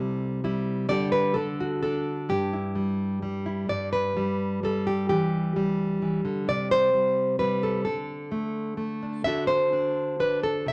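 Moderate large-studio reverb surrounds this gentle, pastoral folk fragment, cut from a longer piece, in which a solo nylon-string guitar sits up front, fingerpicked with a full-bodied, deep classical tone, fresh strings and audible finger squeak, moving in a rubato 3/4 at around 129 BPM through chords such as C, D and Em over its 10.7 seconds.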